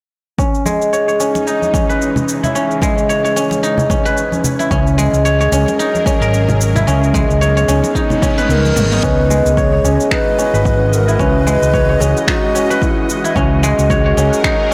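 Organic downtempo in C# dorian at 111 BPM, this hypnotic, earthy passage is cut from a longer piece and rides a swung sixteenth-note feel. A ringing, silvery guzheng played with fingerpicks carries arpeggios up front from 0.4 seconds, softened by a low-pass filter sweep, tape echo and shimmer reverb, while a tense, detuned sawtooth drone holds sustained string-like chords in the background with phaser, vibrato and sidechain pumping. A punchy, overdriven electronic kick and a deep house kit of finger snaps, shaker and toms drive the groove alongside bright, close and dry congas, with a very quiet, airy wind-like noise texture drifting in at 2.3 seconds. A round, dark fretless electric bass enters at 4.7 seconds, saturated and pumping, as the chords move from C#m7 through F#7/C# and B6/C#. At 8.5 seconds a breathy, woody low flute with tongued chiff and expressive vibrato takes up the melody through tape echo and shimmer, just as a drum fill and a reverse cymbal lead into the second section at 9.0 seconds. 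The whole mix sits in a moderate concert hall reverb and is blown-out and overdriven, giving it a loud, gritty edge.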